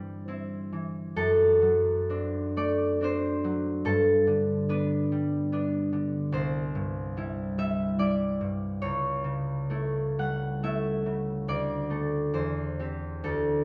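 A classical solo harp piece in a dreamy, peaceful mood, moving at an unhurried pace in three with a freely flexing rubato feel. The concert harp is the only voice, sitting up front with a bright, ringing, fingerpicked tone across a range from C2 to F#5, its chords drifting through shapes such as C/G, D7/F# and A7/C#. A moderate recital-hall reverb of 1.3 seconds surrounds this 13.6-second excerpt from a longer work.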